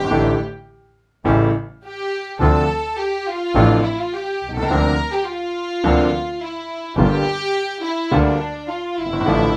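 A moderate studio ambience gives this short cut from a longer tango an intimate, elegant and nostalgic character, with a rubato feel. The bowed violin section takes a solo from 0.0 to 9.6 seconds, played sul tasto with a soft attack and a pure, floating ensemble tone that sits up front yet carries a distant quality. An upright piano accompanies with a clear, woody, natural sound, its action noise audible at close range. A single bowed double bass in a gut-string, period style holds the low end. A dark, smooth, reedy bandoneon adds stabs from 0.1 seconds, while the harmony moves from A7sus4 and A7 through Dm7 and Bbadd9/D to Gm7.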